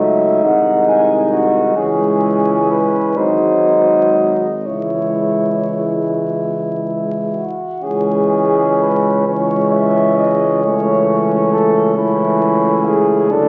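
Heard through the crackle of a very old 78 rpm record, this short cut from a longer classical piece for brass band sits in a wet scoring-stage reverb that gives it a distant, roomy glow. It is a slow, hymn-like setting in C# minor, moving at 37-46 BPM in a rubato 6/8, with a melancholic, elegiac mood. A dark cornet with light vibrato carries the melody, while a punchy, mellow flugelhorn sits up front on a second line beneath it. In the background, a euphonium with gentle vibrato and a warm trombone with a soft attack supply the accompaniment, and a tuba with a smooth top anchors the bass. The harmony moves from G#/B# through C#m and G#7 before settling on A/C# at 10.6 s.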